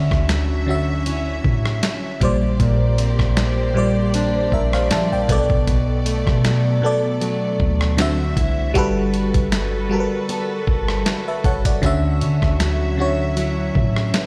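A quiet electronic impact opens this smooth, dreamy contemporary R&B excerpt at 78 BPM in D major, ending by 2.6 seconds as a glassy, bell-like FM electric piano with chorus sits up front beside bowed, sul tasto strings and a woody, boxy old acoustic guitar picking arpeggios with delay in the background. A gritty, compressed sampler-style drum kit with a thumpy kick, rim clicks and hi-hat joins at 0.1 seconds over a deep, round 808-style bass, all riding a lightly swung 16th-note feel. The chords move from Dmaj9 through Bb69, Bm7, D9 and Gmaj9 back to Dmaj9, and the whole mix carries the reverb of a big sound system in a bare stone room.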